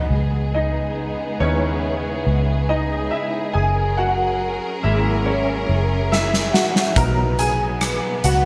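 This heartfelt, emotional pop ballad moves at a slow 70 BPM in a straight 4/4, set in a bright 1980s-style digital production with a moderate plate reverb. A clear, polished concert grand piano plays a solo up front, its deep bass and short sustain colored by an ensemble chorus. Beneath it, a distant, lush studio string section holds bowed chords with expressive vibrato and portamento, while a vintage foam-muted fingered electric bass adds a dark, round, amped low end. At 6.1 seconds a huge arena drum kit enters with a fill until 7.0 seconds, its punchy kick, medium-tuned snare, rim click and hi-hat wrapped in gated reverb and a pumping hall sound. The harmony moves from C#m7 to F#7 and arrives on B in this short cut from a longer piece.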